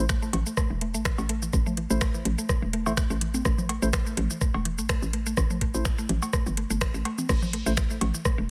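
Quirky and sparse, this minimal techno fragment in swung 4/4 rides on a hollow, bouncy FM bass with sidechain pumping. A woody, round mallet-like synth pluck riff with chorus, sidechain pumping and dub echo joins dark, wave-folded percussive organ stabs treated with chorus and tape echo. From 0.1 s, an up-front, tape-warm electronic kick anchors a garage kit of metallic hats, crash cymbal, finger snaps and shaker, alongside analog electronic rim click, cowbell and congas carrying tape echo; the three drum and percussion parts share a small room reverb inside a digital ambience.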